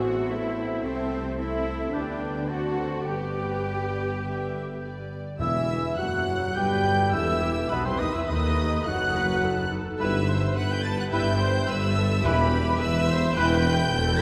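Classical orchestral music: a dramatic, restless excerpt from a fast romantic movement played with rubato, led by a lush, bowed violin section singing a smooth, vibrato-laden melody over a clear viola accompaniment, rich cello and double bass lines, sustained French horn chords and very quiet, mellow, ringing harp arpeggios. In the background, an airy, bright flute ensemble, a classical-style solo oboe, a warm clarinet and a focused second violin section weave second lines, all set in a wet concert-hall reverb. At 5.4 s the music turns to E minor as a dark trumpet section adds tight stabs, a tuba joins the bass and timpani strike, returning at 12.2 s.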